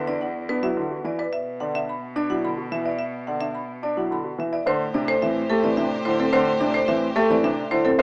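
A woody, bright marimba struck with hard mallets carries the melody in this urgent yet meditative minimalist classical pattern piece at 108 BPM in 3/4, tuned to A4 = 444 Hz, over an up-front baby grand piano accompaniment, a mellow, boxy grand piano spinning arpeggios and a rich, close solo cello bass, with a smooth bowed violin section adding sustained chords from 4.7 seconds as the harmony moves from E5 through Bm to Am7, all heard with light reverb and a small speaker sound in a section cut from a longer work.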